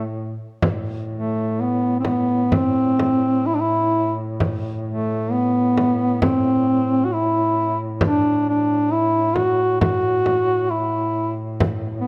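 This short excerpt of Caucasian folk music is a solemn, longing lament in A dorian, tuned to A4 = 441 Hz, moving at a slow 66 BPM in 4/4 with uneven, rubato beats. A mellow duduk carries the melody up front from the first moment, its vibrato-laden folk phrasing staying between A3 and F#4. Beneath it, a second duduk holds a low drone on A2, set distant and roomy, with its own vibrato and scooped notes. A frame drum enters at 0.6 seconds and plays until 11.8 seconds, its acoustic tone close, dry and warm at the front of the mix. Light reverb and a dark production give the lament a shadowed, intimate atmosphere.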